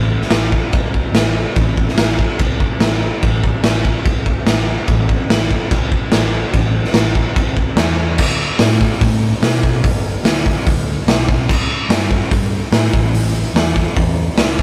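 A straight 4/4 pulse at 145 BPM drives this menacing, raw garage rock fragment in A minor, cut from a longer piece. A picked hollow-body short-scale electric bass opens at 0.0 s, dark and round through an amp, moving between G1 and B2. The raw garage drum kit joins at 0.2 s and sits up front, with a boomy kick, a medium-tuned snare, hi-hat and crash cymbal, all saturated and gritty with a rolled-off top in a bright stone room that pumps. The music shifts into a new section at 8.2 s and carries on to the end of the clip. The sound is a rough rehearsal-room recording with little reverb, loud and unpolished.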